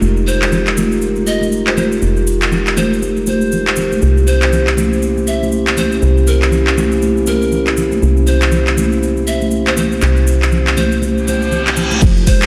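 A dreamy mix soaked in lush hall reverb frames this spiritual afro house excerpt at 120 BPM, swung on the sixteenths over Fm11 and C7b9. A moody, detuned analog pad with chorus and a round, woody FM bass both pump under sidechain, while a breathy bamboo pan flute with chiff and analog delay carries the melody over an afro-pop kit of metallic hats, crash cymbal and handclaps, hard-handed bright congas and a grainy, distant cabasa. A reverse cymbal sounds from 11.2 s, and at 12.0 s a deep, tape-warm electronic kick arrives alongside a brief ringing handpan arpeggio.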